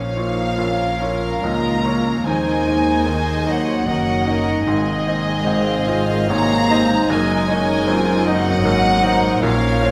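Bittersweet and moving, this cinematic passage in 3/4 drifts with uneven, rubato beats, cut from a longer piece. A dark, intimate violin section carries the melody with light vibrato and soft sul tasto bowing, while a second, clear violin section floats a pure line beneath it, joined by a solo clarinet in classical style from 0.6 seconds. A brilliant baby grand piano with short sustain and a mellow French horn section holding sustained chords sit in the background, alongside a viola section playing close, gentle accompaniment. A very quiet concert harp rings with fingerpicked arpeggios, and the bass is shared by a hushed, dark cello section and a rich, symphonic double bass section. The harmony moves from Bbm through Ebm and Ab to Ebm/Gb, all set in the generous wash of a scoring stage reverb.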